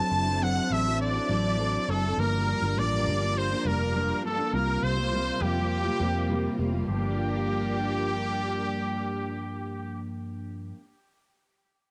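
Indie pop in G dorian at 102 BPM, this short excerpt from a longer piece has a lonely, mellow feel and the worn charm of a home cassette recording with light reverb. A brilliant trumpet carries the melody up front, forceful yet smooth on top with a light vibrato, its tone thickened by ensemble chorus and tape. Beneath it, a mellow electric guitar plays clean, fingered accompaniment, dark and compressed, drifting in pitch under a lush chorus and running on until 10.8 seconds. A string machine voicing violins sits in the background with shimmering, warbling sawtooth chords that swell in slowly and sustain. A vintage foam-muted fingered bass, round and punchy, enters at 0.1 seconds as the chords move from D7/F# through Gm7 and C7sus4 before settling back on Gm7 at 6.9 seconds.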